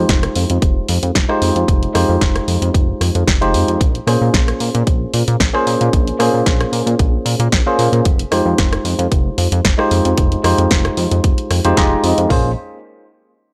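A worn, slightly out-of-tune tine electric piano played through a combo amp and a glossy, chorused synth bass with a filter sweep both open at 0.0 s, pumping to the sidechain while the piano trails an analog delay, before a layered house kit joins at 0.1 s with a punchy kick, toms, rim click, snare and bright hats in a small room, driving this sleek, cosmic nu-disco excerpt in Bb dorian at 113 BPM over Fm7 and Bbm9 chords, all captured as a dry, gritty hardware recording.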